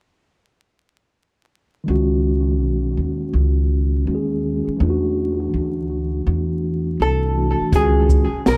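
A mellow tine electric piano with tape echo opens this smoky jazz-hop fragment at 1.8 s, laying suspended chords over a woody, pizzicato upright bass at a swung 82 BPM, before a dark, hollow-body archtop guitar with its own tape echo picks a short melody at 7.0 s and an open jazz kit with a boomy kick, high-tuned snare, hi-hat and shaker arrives at 7.7 s, the mix sitting in a small, echo-heavy room dusted with vinyl crackle.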